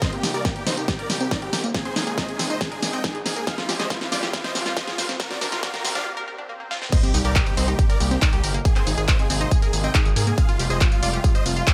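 A straight 4/4 groove of punchy electronic kick and a layered big-room kit with a huge snare, handclaps, hi-hat, tambourine and crash cymbal drives this bittersweet, soaring uplifting trance excerpt, with a gritty, saturated synth bass pumping beneath from 0.2 s. A round analog pluck plays arpeggios in the background under a filter sweep through the build-up, while a lush, airy unison pad holds very quiet sustained chords and a euphoric, bright detuned supersaw lead carries the melody with dub echo. Faint electronic riser and swell effects carry a short break into the drop at 6.9 s, which an impact marks.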